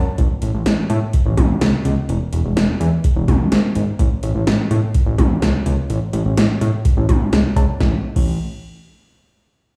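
A fat, detuned sawtooth bass opens this bright, nostalgic synth-pop excerpt in A major at 126 BPM, joined at 0.2 s by an up-front, overdriven analog drum machine with a deep kick, punchy snare, metallic hi-hats, cowbell, toms and crash cymbal, all carried by a moderate plate reverb and the stony echo of a big sound system playing in a bare room, until the bass drops out at 8.4 s.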